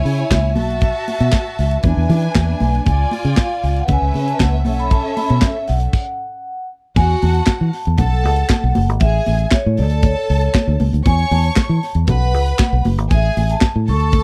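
A mellow vibraphone with soft mallets and slow motor vibrato carries the melody over a lush, bowed violin section, as a driving, glamorous disco groove in straight 4/4 takes shape with round, foam-muted fingered bass and an up-front drum kit of punchy kick, high-tuned snare, hi-hat, handclaps and crash cymbal. Ringing, high-tuned congas join in the background at 0.3 seconds, and the band breaks for a stop from 5.9 to 7.0 seconds before a second section moves through suspended and open-fifth chords. The sound is dry and close, in a 1970s studio style, and the clip is cut from a longer piece.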